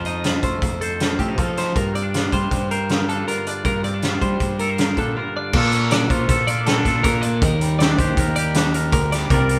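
A loose, up-front indie drum kit drives this restless, wistful math rock and midwest emo cut at 159 BPM in 5/4, its fat snare and punchy kick carrying a gritty, saturated character with a rolled-off top. A bright, twangy electric guitar plays the accompaniment while a clean, compressed twelve-string electric guitar spins arpeggios above, and a dark, round fingered bass with overdriven fuzz holds the low end, all playing live together in one room with moderate studio reverb. In G minor, the chords move from F7 to Gm7, then after a brief break at 5.2 seconds shift to Bbmaj7 and Ebmaj7 in this section cut from a longer piece.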